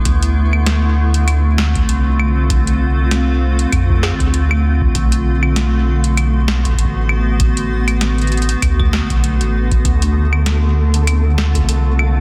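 An up-front, round sine sub bass anchors this cerebral, eerie IDM excerpt at 98 BPM in D dorian, beneath a blurred, evolving granular cloud pad with sidechain pumping, a deep, dry electronic kick and a booming analog drum machine of tonal snare, claves and metallic hats, moving between Dm7 and Bm7 with a light 16th swing until a flickering, detuned grainy texture drifts in at 10.0 s.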